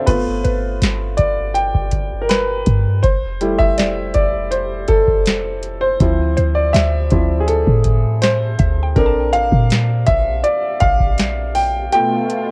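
A booming analog drum machine with a deep kick, crisp snare and metallic hats sets a straight 81 BPM groove in 4/4 for this moody, late-night contemporary R&B fragment cut from a longer piece, where a clear, worn concert grand piano carries a solo up front over G9, Fmaj9, Dm9 and Bbmaj9 chords, a clean, boomy sine-toned 808-style bass sits underneath, a woody, mallet-like FM pluck with chorus and tape echo glints in the background, and at 11.9 seconds the kick drops out as a lush, nasal, detuned sawtooth pad with chorus enters, captured dry on a cassette home recording.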